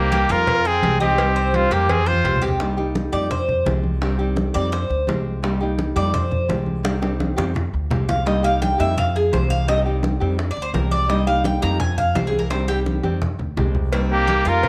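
Two trumpets open this sultry Cuban son and guajira excerpt over nylon-string guitar, tres and upright bass. The clear, smooth-topped lead carries the melody up front, with a punchy second line behind it, both played with pop-style vibrato. After this short opening, the tres takes a solo from 2.6 seconds, its picked arpeggios ringing out on metallic doubled strings, some in octaves. Beneath it the fingerpicked classical guitar offers bright accompaniment with audible finger squeak, while the gut-strung bass plays woody, thumpy pizzicato notes near the front. Thin-skinned, low-tuned congas stay in the background, joined by round cowbell and bongos struck with hard hands, as the harmony circles between Cm, Cm7 and Fmadd9. Moderate echo-chamber reverb gives a small-room ambience, and the trumpets return briefly at 14.1 seconds before the cut ends.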